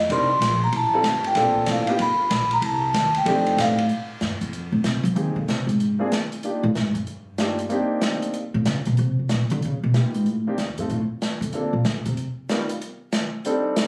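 A lilting swung 4/4 drives this sophisticated, playful small-group jazz fragment: a mellow soft-mallet vibraphone with slow motor vibrato takes a brief ringing solo, then a woody, thumpy pizzicato upright bass solos from 3.9 seconds, backed by an up-front concert grand piano with deep bass and long sustain and an open drum kit of dark cymbals and boomy kick, the group caught in club reverb as if on a phone in the room.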